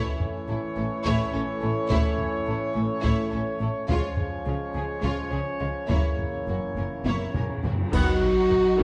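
Hard-stick taiko drums drive this heroic, majestic excerpt of epic orchestral film score in 7/8 at 211 BPM, beneath mellow French horn chords, clear trombone chords and distant trumpet stabs, a lush violin melody over a rich second violin line, and background violas, cellos and double basses in a moderate recital hall reverb, with dark cymbals, clash cymbals and concert bass drum arriving at 3.9 s, soft-mallet timpani filling from 5.9 s, and a band accent at 7.9 s as the harmony moves from A through C# and F#7 to B.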